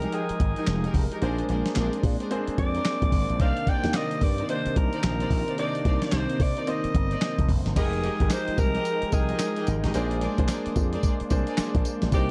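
A swung sixteenth-note groove in 4/4 drives this slick, confident new jack swing excerpt, led by a gritty, compressed sampler-style drum kit sitting up front with a thumpy kick, fat snare, handclaps, hi-hat, tambourine and crash cymbal. Beneath it, an electric slap bass fed through an envelope filter sounds growly and punchy. A raspy alto saxophone carries the melody with light vibrato and scooped notes, its distant, roomy tone trailed by tape echo, while a clear concert grand piano accompanies with audible action noise and deep bass. In the background, a smooth, detuned sawtooth pad with a slow attack holds sustained chords through chorus, and a con sordino string section adds veiled, lush bowed stabs. The harmony moves through Fm11, Bb9 and Cm9 before returning to Fm11 at 7.8 seconds, all set in a dark, warm production with light reverb.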